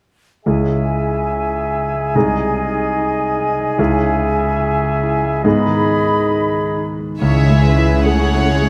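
Cinematic, emotional film score in C# minor, moving at a rubato 65-74 BPM in 4/4 with a longing, sorrowful mood, cut from a longer piece. A clear, up-front concert grand piano with deep bass carries the accompaniment while a ringing, thumb-plucked harp plays arpeggios in the background, and a bright solo clarinet, an airy small flute group and a distant, mellow oboe hold second lines until about 6.9 s. At 7.2 s bowed strings enter sul tasto: a floating violin section takes the melody over a rich second violin line, with woody violas, an intimate cello section and a dark double bass section beneath, the whole ensemble set in a wet scoring-stage reverb.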